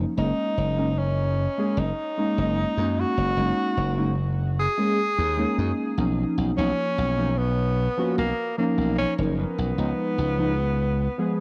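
Dark, cassette-toned production with light reverb frames this dreamy, woozy vaporwave excerpt in F# major, moving at a relaxed 75 BPM in straight 4/4 through F#69, Bmaj9#11 and C#9 chords. Warbling lo-fi synth keys with subtle chorus and vintage 12-bit sampler grit lay down a nostalgic, mellow bed, while a glassy, punchy slap bass with tube saturation sits bright and up front. From 0.2 seconds a breathy tenor saxophone carries the melody in an intimate, whispered jazz style, its soft attack and vibrato trailed by tape echo.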